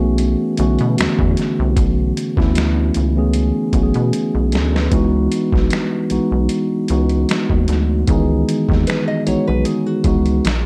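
The recording has a dark, moderately reverberant production, with a short room tail that gives this introspective, sultry neo-soul R&B fragment an intimate glow. At 76 BPM in 4/4, with a lightly swung 16th-note feel, a mellow tine electric piano sits up front, clean and heard through its built-in speakers, with plate reverb. It opens on a B7sus4 chord and settles into C# minor with a C#m11 at 4.9 s. A rubbery, hollow square-wave bass with a resonant filter pluck and a bouncy, wave-folded edge anchors the low end from the start. A gritty, compressed, pitched-down boom bap sampler-style kit enters just after, with thumpy kick, medium-tuned snare, hi-hat and finger snaps, and plays a drum fill into the change. Late, at 8.9 s, a small, woody nylon-string guitar with old strings adds a quiet fingerpicked second line, softened by plate reverb.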